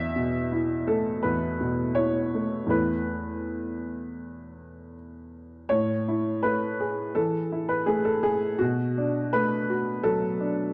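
A dark production with light reverb frames a woody, boxy upright piano placed up front, playing solo throughout this short cut from a longer piece. The neoclassical minimalist music is peaceful and tender, moving at 82 BPM in 4/4 with a rubato feel in A major and spanning E2 to E5. It opens on Esus4, settles onto Amaj7 at 5.7 seconds, and turns to Bm7 at 8.6 seconds.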